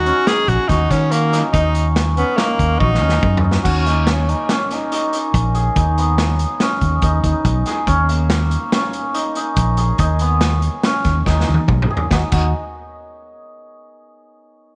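A breathy, whispered tenor saxophone carries the melody only for the first 3.4 seconds of this driving, intricate progressive instrumental in 5/4 at 142 BPM in E-flat minor, over shimmering hammered dulcimer arpeggios, a round, amped fingered electric bass and a vintage drum kit with dark cymbals and a punchy kick in a pumping small room. Drum fills arrive at 2.8 and 11.3 seconds, and a mellow flugelhorn with scooped notes plays a second line from 3.6 seconds as the harmony moves through Ebm7, B69 and Eb5. This is a short excerpt cut from a longer piece, set in light reverb.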